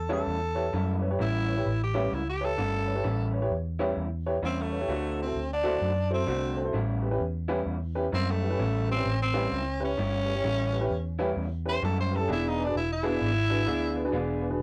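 A swung 4/4 groove at 130 BPM drives this gritty, rollicking blues cut from a longer piece, moving from A7 to D7 and back before landing on E7 at 12.3 seconds. A raspy, growling tenor saxophone takes the solo up front with bright vibrato, over a dark, round, foam-muted electric bass that sits punchy and forward, while a boxy grand piano with audible action noise and long sustain fills in the accompaniment. A slightly broken-up, picked electric guitar through a small old amp plays a compressed lo-fi riff, all captured in a rough rehearsal-room recording with a short booth ambience and saturated character.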